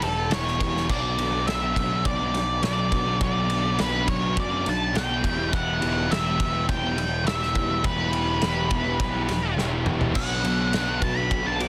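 A dark, brooding stretch of quiet-loud alternative rock opens with everything arriving together: an octave-fuzz lead guitar carrying the melody up front, a thick, double-tracked fuzz guitar churning out a riff, and a fuzz-laden picked bass growling underneath. A loose indie drum kit sits close, with a punchy kick, a medium-tuned snare, dark cymbals and a pumping room sound whose rolled-off top keeps it from turning bright. Far beneath, a very quiet, vintage organ-string ensemble holds soft-attack chords, its chorused tone mellow and slowly evolving. The harmony moves between E minor and B minor, and a drum fill at 9.6 seconds leads into a lead guitar solo at 10.2 seconds, just after a very quiet, overdriven, double-tracked sludgy guitar joins with its own riff at 10.1 seconds. Light reverb and a dense, heavily limited modern master keep the whole piece thick and pressing, and it cuts off partway through a longer track.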